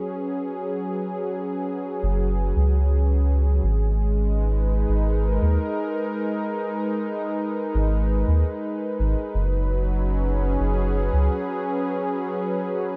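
Hazy and meditative, this ambient dub excerpt moves at 84 BPM in a straight 4/4, tuned to A4 = 441 Hz. A detuned, warbling analog pad with chorus holds sustained chords from 0.0 to 13.0 seconds, moving from F#sus4 to G#m and back, while a deep, round sub bass with tube saturation sits up front from 2.0 to 11.3 seconds. Light reverb lends the room a digital ambience.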